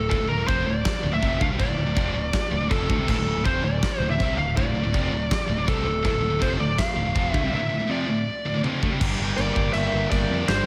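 The recording has a big arena sound, with a lush hall reverb around an up-front acoustic drum kit that has a fat snare, a punchy kick and a rolled-off top. This heavy, dark metal excerpt in 4/4 is led by a dark, high-gain lead guitar melody sitting at the front of the mix. Behind it, a distorted electric guitar and a scooped high-gain guitar play bright, picked riffs, and a growly, direct picked bass sits underneath. A very quiet, double-tracked fuzz guitar joins the riffing at 3.1 seconds. A drum fill leads into a half-time passage at 9.0 seconds, where the harmony moves from Dm to Gm, and at 9.4 seconds a solo French horn adds a classical-style second line with a smooth top and light vibrato.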